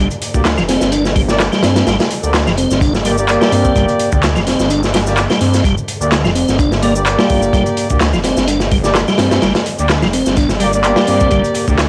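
Swaggering and energetic, this short breakbeat cut rides a swung 127 BPM groove in G minor, with a gritty, saturated acoustic break kit of tight kick, medium-tuned snare and hi-hat sitting up front, layered with an electronic garage kit of handclaps, shaker and metallic hats, both carrying a cassette tape character. A thick, swirling phased saw bass holds the low end while a piping tonewheel organ riff with key click, chorus vibrato, light overdrive and sampler grit runs from the start. A tight brass section adds stabs with light vibrato, roughened by the same 12-bit grit and analog delay, all in a lightly reverberant home-cassette sound over a single G minor chord.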